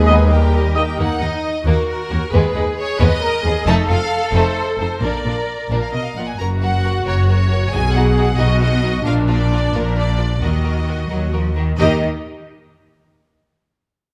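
A bright, focused double bass section sits up front in this cinematic fragment in Eb minor, moving at 89 BPM in 6/8 with an adventurous, determined mood, joined by a smooth, even studio cello section on the bass line and a rich symphonic viola section in accompaniment. Over them a lush, distant symphonic violin section carries the melody with vibrato while an intense chamber violin section adds a second line. The opening second brings a clear trumpet stab, dark horns in the background, a very quiet, tight trombone section and a pure, tongued flute ensemble that stops at 0.6 seconds, and scoring stage reverb gives the ensemble space as the harmony travels from Ebm through F7, Bb and Gb before landing on Eb at 11.8 seconds.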